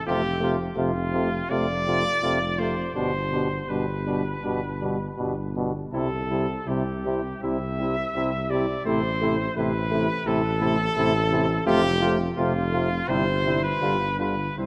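Classical brass quintet music in C major, triumphant and noble, moving at 83 BPM in 4/4 with a rubato, uneven pulse through a progression from F and G to C and A minor, then back through C/G to G7. A clear trumpet with light vibrato carries the melody up front from the very start, while a mellow flugelhorn with a smooth top sings a second line in the background, a distant, roomy French horn and a soft-attacked euphonium fill out the accompaniment, and a dark, close-miked bass trombone with vibrato anchors the bass. A wet concert hall reverb with a 2.4-second decay surrounds the ensemble in this passage cut from a longer piece, which closes on the G7 chord at 13.8 seconds.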